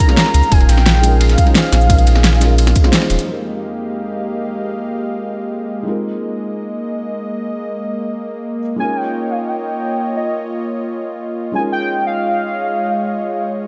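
A lightly reverberant, tape-tinged mix opens this rolling, dreamy liquid drum and bass cut in F minor at 174 BPM. A punchy electronic kick, a pop kit with fat snare, metallic hats and shaker, a gritty sampler-style kit of ride and snare in the background, and a deep, saturated sub bass drive the drop until a brief break and band accent at 2.9 seconds. After 3.3 seconds the drums and bass fall away, leaving a soft, boxy felt-muted upright piano with low-pass filtering and dub echo beneath a detuned sawtooth analog pad pumping with sidechain through chords such as Fm11 and Bb7sus4, while a velvety, wave-folded synth lead with chorus, vibrato, cassette tape colour and dub echo carries the melody at the start and returns at 8.8 seconds over a Db69 chord.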